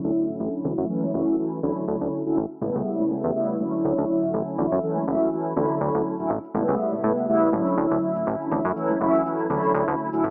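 A mellow, round synth brass, detuned and colored by chorus, phaser and vibrato, sits up front in this sunny, feel-good filtered disco house excerpt over Dmaj9, F#m7 and A9 chords. Beside it, a punchy, funky analog bass plucks with a fast attack and decaying notes, while a bright, close and dry tube shaker and hard-handed congas sit in the background, all riding swung sixteenths. A filter sweep runs through the whole excerpt, and a wet echo-chamber reverb with small-room ambience gives it a compact, small-speaker sound.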